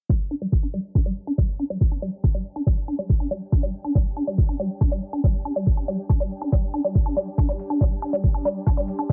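A knocking, tape-warm electronic kick sits up front in straight 4/4 at 140 BPM, driving this hypnotic psychedelic trance excerpt over a G5 chord, while a woody, wave-folded pluck riff with chorus, digital delay and sidechain pumping warbles between G3 and D4. From 2.2 seconds an ethereal, airy pad fades in behind, bright and full-bodied, with ensemble chorus, phaser, reverb and its own pumping, and an overdriven hi-hat slips into the background at 7.2 seconds. A filter sweep runs throughout, and the mix is dry and heavily compressed, with a low-passed, radio-like sound.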